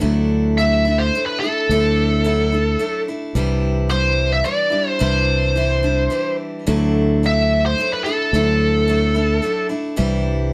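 A straight 3/4 pulse at 108 BPM drives this warm, jangly stretch of folk rock and heartland rock in D mixolydian, cut from a longer piece and swaying between Dadd9 and Cadd9. A bright picked steel-string acoustic guitar, finger squeaks audible, and a round, up-front fingered electric bass play throughout. An overdriven, biting lead guitar carries the melody up front from 0.6 to 9.7 seconds, all captured as a band playing live in one room with light reverb.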